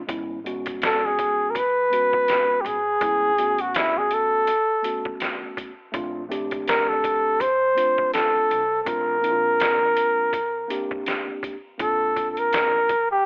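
Heard through a telephone-like filter in a small room, this smooth jazz-hop excerpt from a longer hip hop piece rides a swung groove of compressed, pitched-down, sampler-style trip hop drums with a thumpy kick, a medium-tuned snare, hi-hat and a tape-warm grit. A clean, direct tine electric piano moves from Amaj9 to Bbmaj9 at 5.9 s, while a woody, dark pizzicato upright bass on gut strings sits in the background. Up front, a mellow jazz-style flugelhorn solo enters at 0.8 s with vibrato, a soft attack and a smooth top, carrying the melody to the end at 13.3 s.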